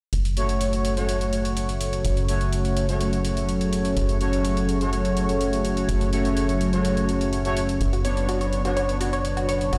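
This hypnotic, dark melodic techno excerpt moves at 125 BPM in 4/4 and opens on a smooth, detuned analog pad holding sustained F# minor chords in the background under a filter sweep. A tight, punchy sawtooth sequencer bass on F#1 and a layered, overdriven electronic hi-hat start with the pad. At 0.4 seconds a fat, brassy analog synth brass comes up front with sustained stabs carrying chorus, vibrato and digital delay. From 1.0 seconds a nasal, evolving drone with pulse-width modulation fades in slowly beneath, sitting in the background. Near the close the harmony shifts to Bmadd9/F#, and at 7.9 seconds a detuned, pulse-wave sequenced synth joins with driving arpeggios, also treated with chorus and delay. The mix sits in a large studio reverb, as if played on a big sound system in a bare room.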